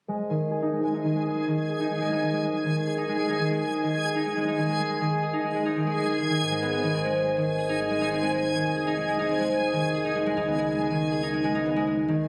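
IDM at 140 BPM in Ab major, wistful and glitchy, built on up-front fingerpicked concert harp arpeggios that ring through a low-pass filter sweep and tape echo. From 1.0 s a reversed, swelling texture joins, dreamy and detuned with a granular, bright shimmer and its own reverb, while a round, deep sine sub bass sits in the background from 6.9 s as the chords move from Ab minor to Ab, F minor 7 and Db5. Captured on a phone in a lush hall with added studio reverb, the passage is cut from a longer piece.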